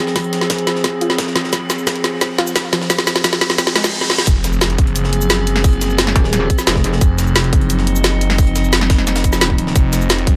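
An eerie, ring-modulated drone and a soft, round chorused pluck with tape-like delay open this dark, futuristic excerpt of technical drum and bass at 175 BPM in F phrygian, riding a build-up with a filtered pluck, a very quiet riser and reverse cymbal, a tight, up-front electronic kick, a layered kit with a woody snare and bright hats, and a gritty, very quiet breakbeat-style kit before the drop at 4.3 s lands on an impact and a swirling, thick, overdriven phased saw bass, joined briefly at 6.2 s by an aggressive, metallic wobble bass.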